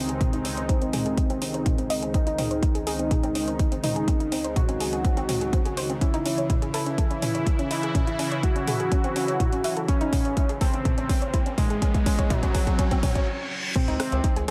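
Dark and dramatic, this melodic techno passage, cut from a longer piece, is one long build-up in a straight 4/4. A fat, warbling analog lead carries the melody with chorus and delay while a filter sweeps across it over the whole stretch, and a woody, nasal wave-folded pluck spins arpeggios through lush chorus, cassette-tape coloring and tape echo, its own filter sweeping alongside. Beneath them, an evolving, airy resonant pad holds sustained chords, a very quiet string-like drone hums with tense vibrato, and the lead, pad and pluck all breathe with sidechain pumping. A punchy, up-front electronic kick drives the groove with a house kit of metallic hats, rim clicks, crash and toms, which rolls into a drum fill from 6.0 seconds as the harmony shifts. A background riser and reverse cymbal climb toward a brief stop, and at 13.9 seconds a gritty, saturated driven synth bass lands, all under a light reverb.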